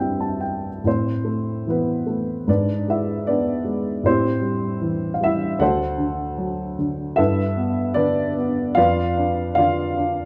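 A dark, woody upright piano sits up front, playing alone in this tender, calm classical passage cut from a longer piece, its mellow tone spanning from deep bass to the upper middle register with a lyrical, rubato feel. After a brief opening fill on C ending at 0.9 seconds, the main theme unfolds through Amadd9, E7/G#, Am7, D7 and Gadd9 before settling on Bdim/F at 8.8 seconds. A moderate recital-hall reverb surrounds the instrument in a dark, warm production.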